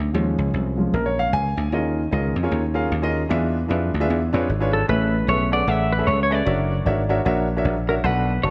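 Jubilant and uplifting, this slice of uptempo gospel swings its eighth notes in 4/4 and is cut from a longer piece. A dry, thumbed slap bass sits up front with a punchy, foam-muted tone, while a baby grand piano with natural, short-sustain voicings shares the foreground and takes a brief solo in the opening 1.7 seconds. From 4.7 seconds a clean, fingered semi-hollow electric guitar carries the melody with a compressed, hollow-body sound and subtle chorus. The harmony moves through rich extended chords, from Eb9sus4 and E7b9 to Amaj9 and F#7b13. A moderate concert hall reverb and a dark, warm production give the recording its glow.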